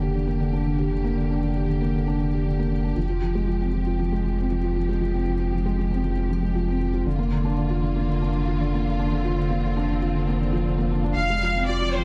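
Hypnotic and intimate, this piano and strings electronica moves at 117 BPM in a straight 4/4 in F dorian, cut from a longer piece. A soft, dark felt-muted upright piano with audible action noise and tape echo repeats a riff up front, resting on a deep, round sub bass held on F, while a bowed studio string section with vibrato fades in on sustained chords moving from Gm/F through Fmadd9 and Bb/F. At 11.2 seconds a rich, smooth violin section enters with a melody, all set in a light small-room reverb with lossy compression artefacts.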